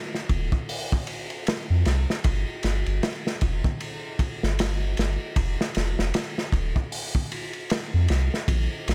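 The recording is dry and close, with little reverb, and the drums sit up front in a small-room sound with a rolled-off top. This short trip hop passage, cut from a longer piece, feels smoky and brooding, and its 4/4 groove carries a swung sixteenth-note feel. A crunchy acoustic breakbeat kit starts at 0.1 seconds, its dark cymbals, hi-hat and ride riding over a tight kick and a medium-tuned snare in a smooth, warm tone. At 0.3 seconds a soft dub sub bass enters, deep and round, its triangle and square wave tones speaking with a fast attack and sustaining low beneath the kit. Both parts play together through to the end at 8.9 seconds, with the bass sitting slightly louder than the drums.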